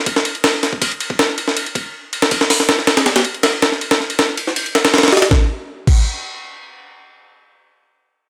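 Raw and nostalgic, this drum and bass fragment cut from a longer piece runs at 160 BPM in a straight 4/4, carried entirely by a compressed, pitched-up breakbeat sampler-style drum kit of kick, snare, hi-hat, ride and crash. The kit sits up front with a gritty, tape-warm character: a thumpy kick and high-tuned snare, with high-pass filtering thinning the kick, snare, hats and cymbals in a dry space. The drums enter at 0.1 seconds and stop at 6.0 seconds, shortly after the music shifts into a new section at 5.3 seconds.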